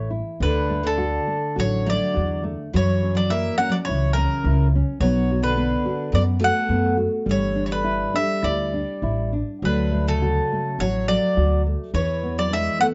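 From the first moment, a bright, double-strung mandolin carries the melody up front in a plate reverb, over a shimmering, octave-doubled twelve-string guitar picking a full-bodied second line and a classical nylon-string guitar thumb-plucking the accompaniment. Beneath them, a dark, thumpy pizzicato upright bass on gut strings sits close, dropping out at 12.7 s, just before the others. This tender, nostalgic fado-style ballad has a rubato feel and moves through D, F#7, Bm7, G5, Dmaj7 and E7, in a light room reverb and a mellow, rounded sound, cut from a longer piece.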